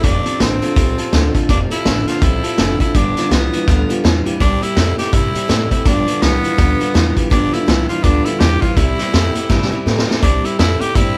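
Rockabilly with a rollicking, upbeat swing, this short excerpt is cut from a longer piece and has the whole band playing live together in one room with light reverb. A raspy, edgy tenor saxophone carries the melody, close-miked, with vibrato and scooped notes in a pop style. Beneath it, an electric guitar through a small old amp plays a twangy, slightly broken-up riff, while a boxy parlour steel-string acoustic guitar picks its accompaniment in the background, finger squeaks and all. The upright bass is woody and thumpy, played pizzicato on gut strings, and the vintage drum kit sits forward with a punchy kick, a medium-tuned snare, hi-hat and a saturated, rolled-off top. The chords move from F through G7 to C, and a drum fill from 9.5 to 10.2 seconds rounds off the passage.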